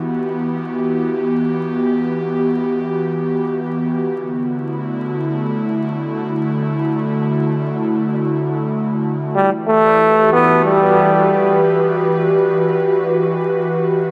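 In free time, this hazy, meditative ambient excerpt fades in an airy, breathy, detuned synth pad with chorus holding sustained chords from Em to Dadd9 and back, while a brilliant trombone offers a brief solo melody with dub echo from 9.4 to 11.6 seconds, all set in a huge, wet reverb with a bed of vinyl crackle.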